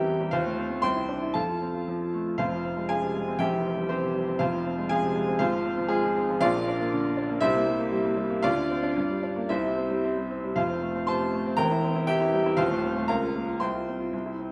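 Heroic and brilliant, this short passage cut from a longer piece is a classical virtuoso piano study in 2/4 at 118 BPM, played with a free rubato feel and tuned to A4 = 436 Hz. A solo grand piano with a clear, open, up-front tone and long sustain spans from Eb1 up to C6, moving from F minor into F major at 6.4 seconds before the opening material returns at 10.6 seconds. The instrument rings out in a recital hall whose wet reverb adds a generous 1.8-second tail.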